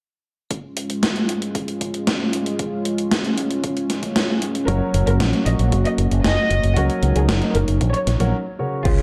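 A straight 4/4 groove of punchy electronic kick set back in the mix and an up-front, overdriven 80s drum machine with gated-reverb snare, hi-hat and crash opens this sunny, playful italo disco excerpt at 0.5 seconds beneath a detuned sawtooth pad of gritty, chorused sustained chords, before an envelope-filtered fingered electric bass, mellow low-passed baby grand piano stabs and a floating sul tasto violin section melody with delay enter together at 4.7 seconds, the whole mix set in a moderate plate reverb.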